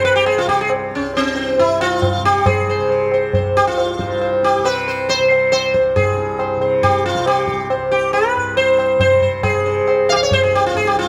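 Hindustani classical music with a radiant, meditative mood, taken from a longer piece at 137 BPM in a straight 4/4. A bright, buzzing sitar carries the melody up front, its sympathetic strings shimmering over a softly plucked, warm tanpura drone held low in the mix, while a low-tuned tabla with a short ring keeps time from a live-sounding room. Close, detailed microphones and light reverb give the recording intimacy, and the music moves into a new section at 6.0 seconds.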